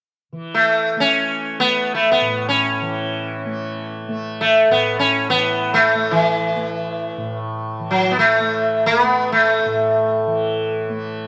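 Devotional and serene, this short excerpt of Hindustani classical music unfolds in free time, cut from a longer piece. A tanpura sets a soft drone beneath everything from 0.3 seconds, its mellow, gently plucked strings buzzing and shimmering quietly in the background. Just after, at 0.5 seconds, a sitar takes the melody up front, its bright, plectrum-plucked tone ringing with buzz and the glow of sympathetic strings. The sitar stays in a fairly low register, moving between E3 and C#4, while the tanpura holds its ground between A2 and A3. A moderate studio reverb gives both instruments a gentle sense of space, and the sitar falls away at 10.7 seconds, leaving the drone to sound on its own until the close.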